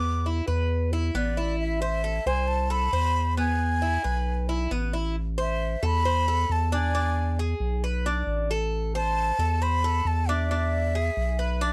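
A straight 4/4 groove at 135 BPM drives this danceable Cuban son and guajira excerpt in A harmonic minor, with all three parts playing together throughout its 11.7 seconds over chords moving between Am and E or E7. A breathy, expressive jazz flute carries the melody up front with vibrato, a soft attack and lifted highs, while the Cuban tres picks metallic arpeggios on its doubled strings and a round, deep analog bass with a nasal, dark filter pluck anchors the low end. The sound is dry and close, like a 1970s studio recording, with a new passage beginning at 5.2 seconds.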